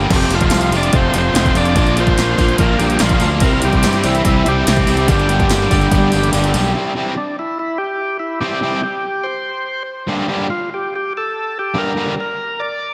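Classic rock with a gritty, swaggering mood, this excerpt cut from a longer piece drives along at 144 BPM in a straight 4/4, moving through F, Bb, C and Gm before settling on C and a closing Gmadd9. Up front, a thick, overdriven tonewheel organ carries the melody through a slow rotary speaker with slapback and tape echo, while a punchy, tape-warm analog drum machine pounds out kick, snare, hi-hat and crash alongside a very quiet jingly tambourine. A fuzzed fingered electric bass growls underneath, and a wall of overdriven guitar riffs sits in the background, one with harmonic tremolo and slapback echo, another distorted with slapback, plus a very quiet double-tracked part and a faint biting lead guitar tracing a second line. A shimmering, octave-doubled twelve-string acoustic guitar adds very quiet picked accompaniment, and a barely audible second organ with key click and chorus vibrato holds sustained chords. 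The kick and snare drop out at 6.3 seconds, and from 6.7 seconds the bass, drums, acoustic guitar and one of the riff guitars fall away, leaving the organ melody and two guitar riffs to ride out the big arena-style reverb.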